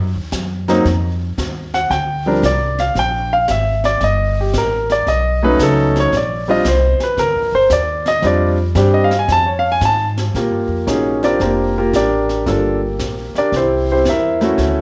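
A woody, thumpy pizzicato upright bass on gut strings opens this excerpt of a sophisticated jazz piano trio in Bb major, swinging at 114 BPM in 4/4. Brushed drums with a high-tuned snare and punchy kick come in at 0.3 s, and an up-front, natural concert grand piano with deep bass enters at 0.7 s, carrying a solo until 10.3 s over changes such as Bb6, Gmadd9 and B9. The playing then moves into a new section built on Bb6, Gm7 and C7, all set in a small room with a moderate plate reverb that gives the trio a warm glow.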